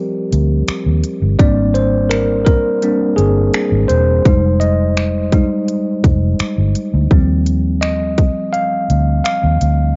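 A bright, bell-like tine electric piano opens this tender, smooth contemporary R&B excerpt at 84 BPM, taking the solo over Eb69, Abmaj9#11 and Fm9 chords, joined at 0.3 s by a dark, round, foam-muted fingered electric bass and a trap kit of finger snaps, crisp hi-hats and a hard-clipped kick, the three parts sitting up front in a digital ambience with the dulled, top-limited sound of a home cassette recording.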